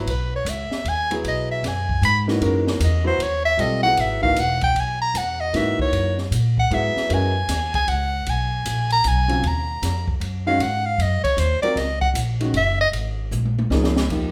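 Modal jazz in a lilting 3/4 swing at 154 BPM, this spiritual, open excerpt settles into F# mixolydian at 4.8 s, moving through suspended chords as a clear, present soprano saxophone solos up front with vibrato and subtone over a concert grand piano whose intimate tone carries audible action noise and deep bass. A woody, thumpy pizzicato upright bass sits prominently beneath, while an acoustic drum kit with dark cymbals, a high-tuned snare and a boomy kick plays throughout and closes with a fill from 13.3 s. The band plays live together in one large studio with moderate reverb, and the passage is cut from a longer piece.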